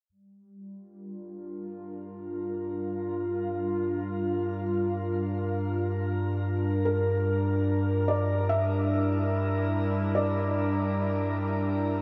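Awash in a dark shimmer reverb, this serene, spacious ambient excerpt floats in free time over a single Gm7 chord. A round, deep analog bass fades in from 0.1 seconds, and at 0.6 seconds a warbling, nostalgic tape-like pad with chorus arrives up front, its detuned, lo-fi tone holding slow-attack sustained chords. At 6.9 seconds a felt-muted upright piano enters with a soft, intimate melody trailed by delay.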